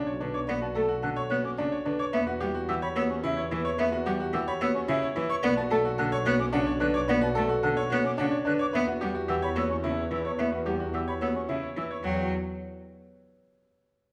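A classical piece of minimalist pattern music, hypnotic and meditative, moves at 109 BPM in a straight 3/4 in E dorian, heard here as a cut from a longer work. A marimba played with soft mallets carries the melody in a mellow, round voice, while a bright grand piano spins arpeggios up front with brilliant tone, long sustain and audible action noise that lends an intimate feel. A single bowed cello gives clear, focused accompaniment with vibrato, and a bowed symphonic double bass section underpins it with a lush, smooth-topped bass line. From 0.3 seconds a concert flute joins with tongued arpeggios in a pure, straight tone. The harmony turns between Bm7 and Emadd9, and the whole ensemble sits in a wet recital hall reverb.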